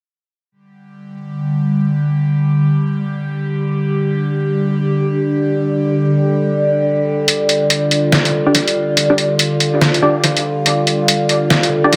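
A resonant, overtone-sweeping drone opens this brooding, heavy slice of deep dubstep, entering at 1.1 seconds with sustained chords, its sawtooth and sine layers blurred by chorus, phaser and built-in reverb as its slow attack and long release let each chord hang. At 7.3 seconds a gritty, pitched-down sampler-style drum kit arrives up front, its hi-hat and medium-tuned snare compressed and tape-warm, set in small room ambience with analog delay, and the half-time groove carries a swung sixteenth feel. A muted, filtered dub chord stab joins at 8.5 seconds, with detuned sawtooth and square waves over a sub octave shaped by a fast-attack filter pluck and short decay, sitting lower in the mix and softened by phaser, cassette tape colour and dub echo. The harmony rests on G5 across the single section. The whole mix is echo-heavy and bathed in moderate spring reverb, and the recording is cut from a longer piece.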